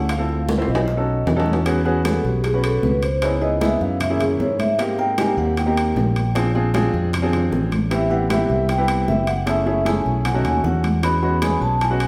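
Afro-Cuban jazz at a lively, danceable 154 BPM in a straight 4/4, this short cut from a longer piece sounds like a band playing live together in one room, bathed in a wet, large studio reverb. A woody upright piano sits up front with audible action noise, comping alongside a growly, punchy fingered electric bass that drives the low end with a bright, amped edge. A drum fill from 0.5 to 1.7 seconds leads into a vibraphone solo that runs from 1.7 seconds to the close, played with soft mallets and a medium motor vibrato for a mellow, ringing tone. The percussion blends three textures: high-tuned, damped congas sounding distant in the background, very quiet round, low-tuned bongos, and close, dry timbales with a metal-shell ring. Underneath the solo, the harmony moves through rich jazz changes such as C#m7, F#9, G#maj9 and Am9 before settling on E6.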